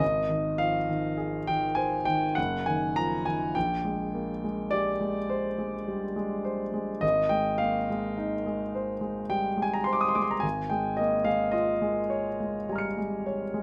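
The recording is close and intimate, with a moderate studio reverb and the quiet clatter of the piano's action audible beneath the notes. This is a fragment of impressionist classical solo piano, luminous and serene, unfolding in a gentle triple metre with a freely breathing rubato. A warm concert grand plays alone from 0.0 to 13.6 s, sitting up front in the sound with deep bass and long sustain, reaching from Gb1 up to Db7. The harmony drifts through lush, colourful chords, moving from an Ab6 opening to a Gbmaj13 at 2.4 s and a Bb13 at 3.6 s before settling toward Abadd9 and Eb11/Ab. The polished tone and lingering resonance give the passage a hushed, glowing stillness.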